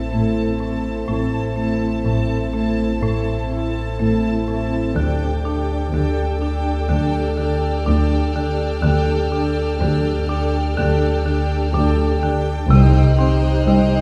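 The recording sits in a wet scoring-stage reverb, heard from further back in the room, which lends this tense, mysterious suspense cue a hazy, shadowed depth. A deep, full sub bass drone with an added octave anchors the low end, joined almost at once by bowed cello and double bass sections playing sul tasto with soft attacks, the cellos set in the background and the basses very quiet. Above them, a dark, woody viola section supplies lush accompaniment, while a close, intimate violin section carries a second line with gentle vibrato. A marimba struck with hard mallets on padauk bars plays a percussive, smooth riff, and a glassy, ethereal glass harmonica holds sustained chords in the background. At 5.0 seconds a faint, high violin texture enters as the harmony moves from A minor to D suspended, before a shift to C minor at 12.7 seconds darkens the close of this cut from a longer piece.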